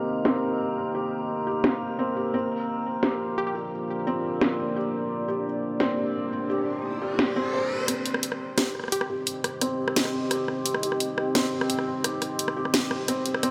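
A huge ambient reverb hangs over this heavy, tense excerpt of half-time drum and bass at 173 BPM in C minor, moving from C minor to B-flat and back. A deep, dark pad of detuned sawtooth and sine layers with a sub octave holds sustained chords throughout, slow to bloom and long to fade under its chorus. Up front over it, a felt-muted upright piano plays soft, intimate arpeggios with audible action noise, its tone filtered and echoed by delay, and a filter sweep runs over it through the first 7.9 seconds. An eerie, metallic FM drone adds inharmonic texture until 7.9 seconds, while a crystalline wavetable pluck touches a single G4 in two brief, chorused flashes. The electronic, layered drum kit enters at 0.3 seconds with a cracking snare, rim clicks and filtered hi-hats, and a riser leads from 6.1 seconds into a build-up that carries the second half to the cut.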